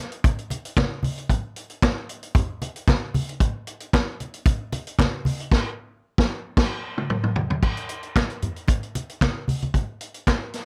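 Glamorous and danceable, this short disco groove runs at 114 BPM in a straight 4/4 and is cut from a longer piece. A vintage acoustic drum kit sits up front in a studio room, pairing a punchy kick and a medium-tuned snare with hi-hat, handclaps, toms and dark crash cymbals, all with a mid-forward, rolled-off top. Congas play alongside the kit for nearly the whole span, low-tuned with a thick skin and soft hands, recorded close and dry with a warm body. A band accent arrives at 5.5 seconds, and a drum fill at 6.6 seconds leads into a new section at 7.6 seconds. Light reverb gives the mix a gentle sense of space.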